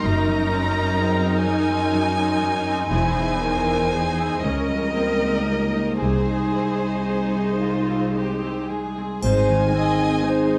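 A short excerpt in a wet recital-hall reverb: a tender, serene slow romantic movement for orchestra in a rubato 6/8, where a rich, expressive violin section sings the melody over a focused second violin line, smooth violas, a lush cello section and an even double bass section, with a ringing harp arpeggiating in the background, and at 9.2 seconds a dark, distant French horn section and a close, dry triangle join on the closing chord.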